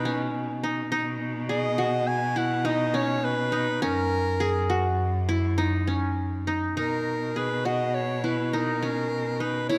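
A soprano saxophone, qanun and cello begin together in this hopeful, restless excerpt of contemporary chamber music, moving at 103 BPM in a straight 5/4 in B major, tuned to A4 = 438 Hz. The clear soprano saxophone carries the classical-style solo melody with vibrato and a soft attack, while the fingerpicked qanun's bright-edged triple strings spin arpeggios and a single bowed cello supplies a rich, focused bass line with vibrato, all three placed up front yet wrapped in a moderate concert hall reverb. The harmony drifts from a rootless Emaj7 over B to F# at 3.8 seconds, then settles on B as a new section opens at 6.8 seconds.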